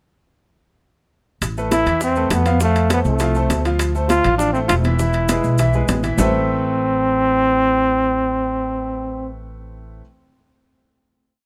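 Close, detailed and nearly reverb-free, this short, driving and danceable salsa piece in A harmonic minor races at 202 BPM: a woody, dark pizzicato upright bass plays an up-front tumbao that anticipates the chords beneath a brilliant upright piano montuno in octaves, while a bright trombone with vibrato leads with motif-based call phrases over background congas with slaps and open strokes, tight, high-tuned bongos in steady eighths with hand bell, ringing metal-shell timbales playing a shell pattern and bell, and grainy maracas, until the percussion stops at 6.3 s and bass, piano and trombone hold a final Amadd9 chord.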